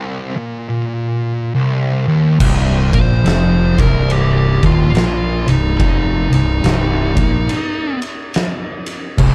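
A double-tracked fuzz guitar opens alone with a sludgy, brooding riff in C minor at a slow, swung 71 BPM. At 2.4 seconds the growly, overdriven fingered bass and an oversized low-tuned drum kit crash in, with a punchy kick, fat snare, dark cymbals and a gritty, pumping room sound. From 2.9 seconds a compressed fuzz lead guitar solos through tape echo over a dark, dry stoner-doom mix.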